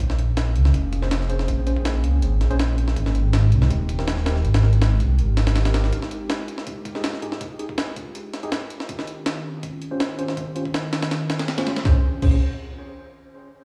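A dark, detuned saw bass rumbles up front in this nostalgic yet frenetic drum and bass excerpt, its deep, beating tone thickened by tube saturation before it drops out at 5.9 seconds and returns briefly at 11.9 seconds. Also up front, a compressed, pitched-up breakbeat kit drives the jungle groove with a thumpy kick, medium-tuned snare, hi-hat and crash, sounding gritty and tape-toned, as if re-recorded in a small room, with high-pass filtering across the kit. A lo-fi, warbling pad holds sustained chords throughout, moving from Bbm9 through Abmaj7, Fm9 and Eb13, its vintage, wave-folded texture colored by chorus, reverb and 12-bit sampler grit while a filter sweep shapes it. From 1.0 seconds a barky tine electric piano adds clean stabs, heard through its built-in speakers and treated with low-pass filtering, sampler grit, dub echo and its own filter sweep. The mix carries light digital ambience and a large studio reverb, like a big sound system in a bare room.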